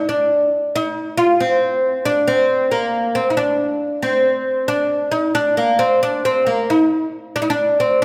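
A moderate, recital-hall reverb surrounds this brief Persian passage, lending the solo oud an airy, resonant space while it stays up front. The fretless oud, plectrum-plucked on double strings with a bright, woody tone, plays alone throughout in dastgah shur on D, moving between Bb3 and F4. At 91 BPM in a straight 6/8, the mood is melancholic and full of longing.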